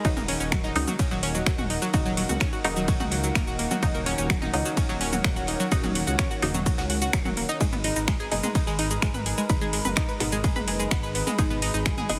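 Melodic techno at 127 BPM in G# minor, dark and dramatic, with a punchy up-front electronic kick and a house kit of snaps, metallic hats, ride, shaker and toms, a very quiet gritty low-tuned kit of fat snare and dark ride in a bright stone room, a deep rumbling detuned saw bass, a round analog pluck arpeggio with chorus and tape echo, a muted phased dub chord stab in the background, and a thick, warbling vintage unison pad, the bass, pluck, stab and pad all pumping under sidechain as D#m7 moves to G#m at 7.6 seconds in a heavily compressed, radio-like mix with light digital ambience.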